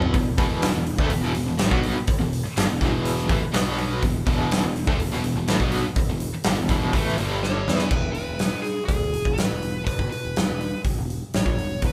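Hard rock at 123 BPM in a straight 4/4, anthemic and powerful, cut from a longer piece and played live in one room with moderate large studio reverb. A huge arena drum kit sits up front with a punchy kick and medium-tuned snare, opening on a fill, while picked electric bass growls underneath and two guitars carry the riff over power chords on E5, B5 and G5: a high-gain distorted guitar tucked in the background and a bright overdriven semi-hollow guitar with tremolo. During another drum fill at 7.4 seconds, a nasal lead guitar with a parked wah enters with an overdriven melody, and the riff guitars stop at 7.9 seconds as the closing section begins.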